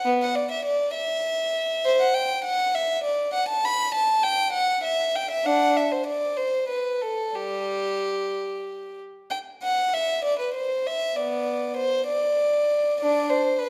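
A rubato 6/8 lilt carries this radiant, flowing passage from a baroque-style classical suite movement for a single unaccompanied violin, cut from a longer piece. The violin sits close and up front, warm and intimate, with light vibrato, a soft attack and an airy bow, ranging from G3 to B5. A wet recital hall reverb surrounds the player, and a new section begins at 9.3 seconds, running until the passage ends at 13.7 seconds.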